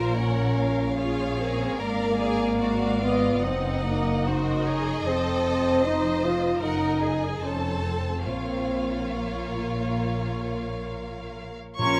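Set in a moderate concert hall with close, detailed microphones, this yearning, solemn slow romantic orchestral movement in Bb minor, cut from a longer piece, moves with rubato at 67-78 BPM, as a rich, focused violin section sings the vibrato melody over a lush second violin line, expressive violas, an up-front mellow French horn section holding sustained chords, and a distant, bowed cello and double bass foundation, until at 11.8 s a clear oboe, airy flutes, a distant clarinet, soft-attack trombones and round, soft-mallet timpani join for a brief moment at the very end.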